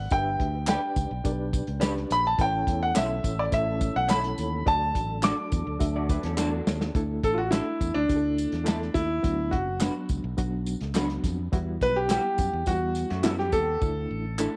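A straight 4/4 groove at 105 BPM drives this joyful, uptempo 1960s-style soul piece in D major, cut from a longer work, with a dry, dark soul drum kit and a tight kick marking the beat, drum fills closing each half, and close tambourine and group handclaps adding lift. Up front, a clear, vintage concert grand piano carries the melody over a punchy, bright fingered electric bass. A reedy, slightly out-of-tune electric piano shimmers with fast tremolo, a twangy picked guitar through a small old amp adds chorused stabs, and a mellow tonewheel organ holds round chords on a slow rotary speaker from 2.4 to 6.9 seconds. A second, lo-fi fingered guitar plays a brief compressed riff near 6.0 and 13.1 seconds, all set in a small room with light reverb.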